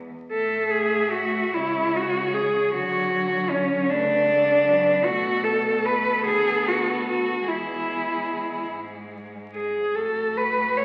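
A rubato 6/8 lilt of 46-53 BPM in dotted quarters carries this serene, lyrical classical passage for cello ensemble in A major, cut from a longer piece. A low, rich bass cello and a clear, focused accompanying cello open at 0.0 s, and at 0.3 s two more rich cellos join: a melody reaching up to E5 and a second line that sits loudest in the blend, all four bowed with vibrato. The harmony moves from A5 through Dmaj7, Bm7 and E to a closing Asus2, heard in a reverberant recital hall through the crackle of a very old 78 rpm record.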